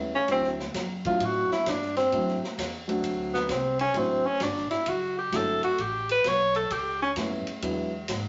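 Small-group swing and bop jazz at 131 BPM with a playful, sophisticated air, this short fragment from a longer piece features a close-miked tenor saxophone soloing up front with vibrato, a soft attack and scooped notes over D7, A7 and E7 harmony, backed by a dark, mellow grand piano accompaniment, a woody, growly pizzicato upright bass and a natural-sounding drum kit of hi-hat, ride, medium-tuned snare and punchy kick, all set in a wet studio reverb with a softened, rounded top end.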